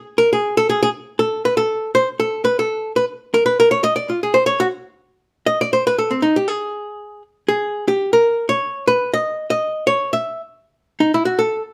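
A clean, dark-toned archtop guitar, miked and amplified, plays a picked, compressed solo up front from 0.2 to 11.6 seconds in this brief, playful jazz fragment, swinging its eighth notes at a brisk pace. Its hollow-body voice sits in a moderate studio reverb, giving the warm mood a touch of room around the lines.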